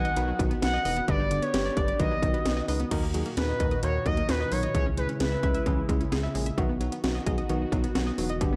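A smooth sawtooth lead with gliding portamento and vibrato sits up front in this bright, wistful synth-pop fragment, singing its melody through chorus and tape echo before falling away at 5.9 seconds. Beneath it, an overdriven house drum kit hits hard with a punchy kick and cracking snare, layered with hi-hat and crash cymbal and carrying the tone of a large room. A rubbery, hollow square-wave bass bounces along with a resonant, wave-folded edge, while a swirling phased pad spreads detuned sustained chords in the background. A round analog pluck spins arpeggios through its own chorus and echo, and a worn, slightly out-of-tune tine electric piano adds accompaniment through a combo amp. The harmony drifts from B to G and back, then moves through D#m and C#m before returning to B, all held in a dark production with light reverb.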